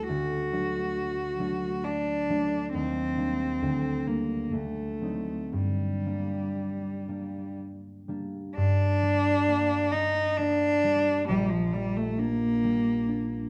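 Yearning and melancholic, this romantic classical duo in G minor moves in a rubato 3/4 at 57-69 BPM, as a single bowed cello sings a smooth, clear melody with light vibrato up front over a mellow concert harp whose thumb-plucked notes ring through harmonies such as Ebmaj7, D7b9 and Gm, both heard throughout the 13.5 s excerpt within a large studio reverb and a dark production.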